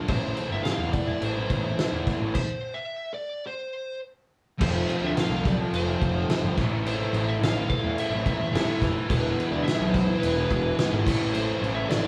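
Quiet-loud alternative rock with a brooding, cathartic mood, heard in a short cut from a longer piece in a straight 4/4 feel. A loose indie drum kit sits up front with a fat snare, tight kick and dark crash cymbals, its acoustic sound roomy and rolled-off at the top. A growly fuzz bass, bright and overdriven, anchors the low end beneath two thick fuzz guitars playing riffs, one dark and very quiet, the other brighter and set in the background. A dark fuzz lead guitar carries the melody, while a very quiet tonewheel organ holds sustained chords with key click and a slow rotary speaker, lightly overdriven and clear. The band stops from 2.4 to 4.6 seconds, and at 4.6 seconds a double-tracked, overdriven guitar riff joins in the background as the chords move from Am through Fadd9 and E back to Am. The whole band sounds as if it is playing live together in one small room, with moderate reverb.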